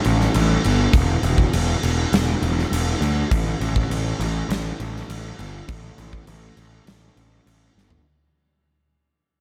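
This rock excerpt leans into shoegaze and dream pop, with a brooding, melancholic mood at a steady 101 BPM in straight 4/4, tuned to A4 = 442 Hz. A huge arena drum kit sits up front, its punchy kick, medium-tuned snare, toms and bright crash cymbals carrying a pumping hall character. Alongside it, a picked electric bass growls through fuzz and overdrive, direct and amped, moving between E1 and D2 and standing slightly louder than the drums. The overall sound is dry, with little reverb, and the whole passage fades out across its eight seconds. A drum fill arrives at 7.8 seconds, just before the kit stops at 8.1 seconds.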